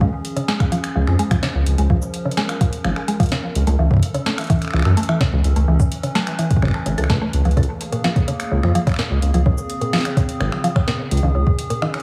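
IDM at 127 BPM in a straight 4/4, this short, wistful and intricate passage is cut from a longer piece and tuned slightly flat of standard pitch. A warbling, nostalgic pad with a slow attack and long release holds sustained chords through chorus and its own reverb, moving from Db to A/C# at 3.6 seconds, then to Bbm7/Db and Eb7sus4/Db. Alongside it, a woody, round FM pluck with a fast attack and short decay spins arpeggios through chorus and tape echo. Up front, a deep, rumbling detuned sawtooth bass sits beside a soft, overdriven electronic kick, while a booming analog drum machine, re-recorded in a large room, enters at 0.2 seconds with a crisp snare, metallic hi-hats, cabasa and finger snaps run through analog delay. The mix is echo-heavy with light studio reverb and a digital ambience.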